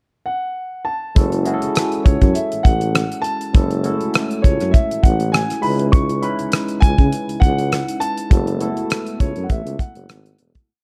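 A concert grand piano opens alone at 0.3 s with a motif-based, song-like melody before, at 1.2 s, a barky, lightly overdriven tine electric piano with phaser adds pushed drop2 chords and grace notes, a jazz-inflected tuba sings a melodic soul bass line with vibrato, scooped notes and muted ghost notes, and a dry, up-front 70s drum kit with a tight kick, hi-hat and rim click sets a smooth mid-tempo groove, giving this silky, lush 1970s-style soul piece a dark, intimate sound before it fades out from 8.3 s.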